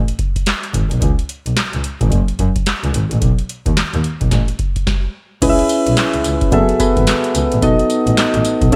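A booming analog drum machine opens this bouncy, confident new jack swing excerpt with a deep kick, crisp snare, handclaps, metallic hats, tambourine and crash, soon joined by a rich, expressive bowed double bass with vibrato and portamento, and after a brief stop at 4.9 seconds, round, dark electric-piano-like synth keys with chorus enter at 5.4 seconds over light digital reverb.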